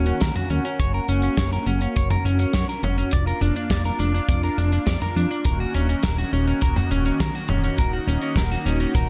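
Bathed in studio reverb, this driving, cinematic synthwave passage, cut from a longer piece, sets a silky, chorused analog string pad pumping on sustained chords beside a clean, scooped electric guitar picking arpeggios through digital delay, while a saturated, detuned fat analog bass sits up front and a soul drum kit of hi-hat, medium-tuned snare and toms with gated reverb enters at 0.1 seconds, joined by a tight, rolled-off kick at 0.2 seconds, over a progression of Ebm7, Gb and Bb/F.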